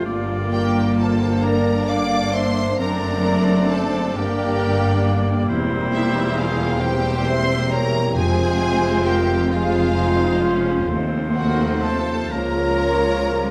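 A melancholic, solemn slow romantic orchestral movement in 6/8 at 44 BPM, played with rubato in a reverberant recital hall, opens with a lush, vibrato-rich violin section carrying the melody over a second violin line, a bright oboe, a mellow, distant clarinet and an airy flute group, while expressive violas with portamento accompany, a smooth-topped French horn section and a very quiet, clear trombone section hold sustained chords, and intense cellos with focused double basses anchor the bass, the harmony settling into F minor from 5.5 s and hard-mallet timpani sounding on F2 from 8.2 s to 9.5 s.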